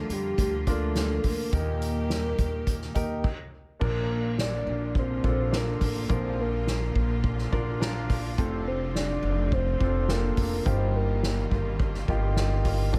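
A small, echo-heavy room gives this short cut from a longer piano-driven pop piece an uplifting and hopeful glow, moving at 105 BPM in a straight 4/4 in Bb major, with a stop at 3.2 seconds before the second section opens at 3.8 seconds. A round, sub-octave synth lead carries the melody through chorus, phaser and analog delay over a clear, intimate concert grand with audible action noise and long sustain, while a distant, bright string section holds sustained chords beneath. Up front, a woody pizzicato upright bass anchors the low end, and a soft-mallet drum kit with a punchy kick, snare, hi-hat, ride and crash enters at 0.1 seconds.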